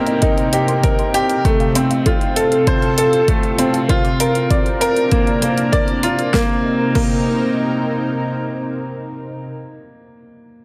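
Intimate and melancholic, this piano and strings electronica fragment, cut from a longer piece, is led by a bright, woody upright piano riff with delay, sitting up front over a lush, detuned unison pad of sustained chords treated with chorus. A soft, round pluck adds very quiet, decaying arpeggios, while a deep house drum kit with a fat snare, hi-hat and crash cymbal plays alongside a punchy electronic kick, both dropping out at 7.1 seconds. Light reverb and digital ambience frame the Cm7, F/C and Bb/C changes, and the piano rings on alone until 10.6 seconds.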